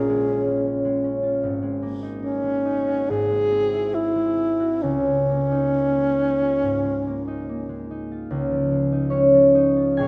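Pastoral and luminous, this brief, rubato impressionist classical excerpt in Db major at 65-79 BPM pairs a mellow, vibrato-tinged alto saxophone singing a classical-style solo melody up front with a warm, thumb-plucked concert harp whose ringing chords, from Db6/Bb through Ab9sus4 and Abaug7 to Db69 and Dbadd9, bloom in a moderate scoring-stage reverb.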